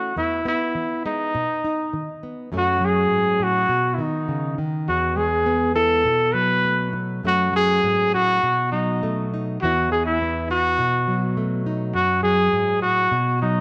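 A straight, danceable 4/4 pulse carries this sunny highlife clip from a longer piece, where a breathy, mellow trumpet plays a jazz-style solo melody with light vibrato and scooped notes over a dark, fingerpicked nylon-string guitar in classical style, both up front and bathed in a moderate echo-chamber reverb that gives the horn a roomy, distant glow as the harmony cycles through E, B, F#m and B7.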